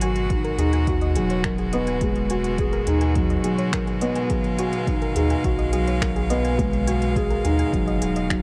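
Cinematic and intimate, this short cut of piano-and-strings electronica sets a felt-muted upright piano riff, dark and boxy up front with tape echo, over a bowed string quartet holding rich chords with vibrato and sidechain pumping, a soft round pluck arpeggiating in the background with chorus and tape echo, a deep sine sub bass, crisp-hatted drums with finger snaps, and a punchy layered kick arriving at 0.3 seconds, all on a single G#m7 chord in a dry, close sound.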